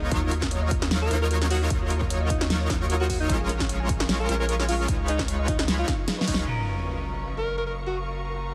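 Through a heavily compressed, radio-like sound with light reverb, this bright, playful future bass piece sets a present, subtoned alto saxophone melody with vibrato and dub echo over a fat, nasal, detuned sawtooth polysynth riff, round tine-like plucked arpeggios in the background, a very quiet ethereal pad, a thick saturated sub bass pumping under the sidechain, a punchy electronic kick and a big-room kit with a huge snare, until a drum fill at 6.1 seconds leads at 6.5 seconds into a section where a dark, clean picked electric guitar with analog chorus and an electronic sub drop join in.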